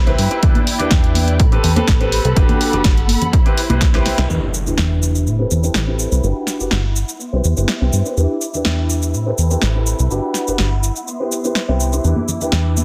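A lush, clear string section opens this nostalgic, groovy slice of filtered disco house, holding sustained chords with vibrato and a smooth top, pumping under sidechain and dulled by a low-pass filter. Almost at once a bright, brilliant grand piano joins with open, long-sustaining accompaniment coloured by phaser, while a plucky, funky analog bass, blending sawtooth and pulse tones with a fast-attack filter pluck and a moving notch, sits dark and up front. A dry, punchy analog drum machine supplies hi-hat, shaker and snare, and tambourine and congas add an acoustic, small-room layer in the background, while a punchy electronic kick drives the opening bars until 3.9 seconds. A drum fill and a band accent lead into an electronic impact at 4.3 seconds, where a filter sweep begins and carries through the rest of the excerpt as the percussion drops away, returning at 12.0 seconds. Underneath, a looping progression of Em7, Am9, Gmaj7 and Cmaj7 keeps the mood nostalgic, all set in a small room ambience with a dense, heavily limited modern master.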